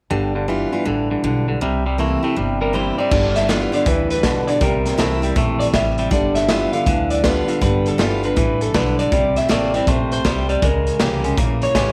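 Rockabilly in G mixolydian, this upbeat, rowdy cut from a longer piece swings at 160 BPM in 4/4. A full-bodied picked steel-string acoustic guitar plays the accompaniment from the start, alongside a clean, compressed twangy electric guitar riff with a warbly pitch drift sitting up front, and a woody, growly pizzicato upright bass down low. At 2.6 seconds a slightly broken-up electric guitar through a small old amp takes the melody, trailed by tape echo. A raw garage drum kit crashes in at 3.1 seconds, its punchy kick, medium-tuned snare, hi-hat and crash cymbal sounding saturated and gritty with a pumping room and rolled-off top. The changes move between G7 and C7, closing on a C#dim7, all set in light reverb and small room ambience.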